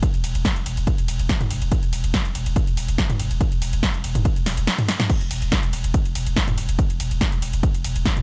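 A dry, close-sounding mix with little reverb carries this intense, hypnotic slice of driving peak-time techno in a straight 4/4 pulse, cut from a longer piece. A heavy, layered electronic kick with a tape-warm character anchors the whole clip, joined by a deep, thick sub bass on E1 that is overdriven, low-pass filtered and pumps against the sidechain. Sitting up front, the techno drum kit brings a punchy snare, warm hats, ride, crash and toms, with the hats, toms and cymbals also pumping, and a drum fill arrives at 4.9 seconds.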